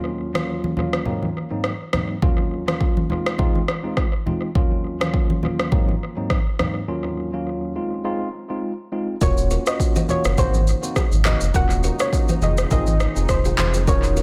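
An echo-heavy mix with light reverb frames this mellow, sultry afrobeats excerpt in Eb dorian at 103 BPM with lightly swung 16ths: a clean tine electric piano heard through built-in speakers moves through Ebm7, Ab7 and Fm7 over an up-front, overdriven electronic drum kit with a deep kick, handclaps, rim click and shaker, while bright, low-tuned congas sit in the background, and delay trails the piano, drums and congas. After a break from 6.9 s, a full sine-and-triangle sub bass with octave arrives at 9.2 s, along with a soft, round pluck melody carrying chorus and a filter sweep, and a fingerpicked nylon-string guitar riff set behind the other parts. At 9.7 s a very quiet, moody, detuned pad with a slow attack joins, holding dark sustained chords beneath.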